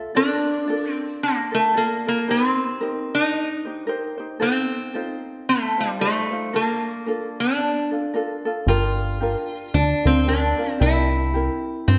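Swung eighths at 113 BPM in 4/4 set an easygoing, sunny Hawaiian lilt in Bb major, with a mellow, lightly fingerpicked acoustic ukulele laying down the accompaniment from the start and a metallic, nasal lap resonator guitar played with slide and fingerpicks carrying the melody up front from 0.2 seconds. The chords move from Bbmaj7 through Cm7 and F7, back to Bbmaj7, then to Gm7 and C7, and at 8.7 seconds a punchy, funky analog bass with a fast-attack filter pluck joins near the front of the mix. The parts sit in a wet scoring-stage reverb, giving this relaxed excerpt a spacious glow.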